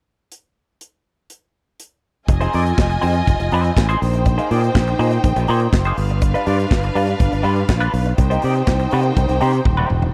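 Driving and sultry, this dry, close-sounding 1970s-style disco excerpt opens with the acoustic drum kit of punchy kick, snare, hi-hat, toms and handclaps playing alone until 2.3 seconds, when a bright, growly fingered electric bass, a clean picked semi-hollow guitar with wah and spring reverb, and a lush, bowed string section with vibrato enter over a Fm7, Bb9sus4, G7 and Cm7 progression, before a drum fill at 9.7 seconds.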